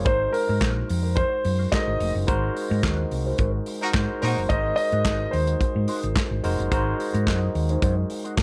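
An intimate grand piano carries the melody up front in this driving, danceable disco cut from a longer piece, its long sustain and audible action noise giving the line a natural, close-up feel until it drops out at 6.4 seconds. Beneath it, a dark, round hollow-body short-scale electric bass sits prominently, fingered and amped, while a punchy modern studio drum kit with a medium-tuned snare drives the straight groove with kick, snare, hi-hat and handclaps. A bright, barky tine electric piano runs through a combo amp with phaser, building the harmony from an opening Ab9 chord. A mellow, clean electric guitar colored by wah and analog chorus stays tucked in the background. The full band hits an accent from 2.3 seconds, and a warm pop-style horn section adds a short, present stab with light vibrato at 3.8 seconds, all framed by light reverb and small room ambience.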